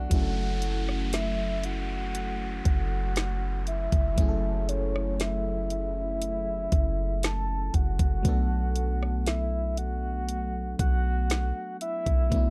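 A dark, dry mix puts a knocking kick, woody snare, rim clicks and warm hi-hats up front beside a deep, boomy 808-style bass, in this short excerpt of late-night contemporary R&B in F# minor at 59 BPM. A glassy, bell-like FM electric piano, treated with chorus and phaser, carries the harmony from F#m7 to Bm7 at 8.2 seconds. Above it, a round, octave-layered synth lead sings a longing melody with chorus, tremolo, vibrato and delay, while a faint electronic downlifter sits underneath until 8.2 seconds.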